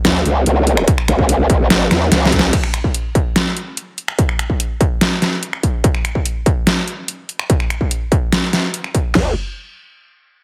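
A half-time 4/4 groove at 145 BPM drives this heavy, aggressive slice of wobble dubstep, cut from a longer piece and tuned slightly below standard pitch. It opens straight into a drop, with a growling, wobbling bass built from a sine tone through a formant filter, saturated, compressed and thickened with chorus and overdrive; it sits up front with a fast attack and sustained body before falling away at 2.5 seconds. One electronic drum kit, layered and overdriven with a tape-warm sheen, plays crash cymbal, finger snaps, hi-hat and a huge snare. A second layered kit joins at 0.9 seconds, with kick drum, crash and a deep snare roughened by distortion and re-recorded in a small room. A drum fill closes the drop, the drums carry the long middle stretch, and the bass returns briefly at 9.2 seconds. Light reverb surrounds a heavily compressed, radio-like sound.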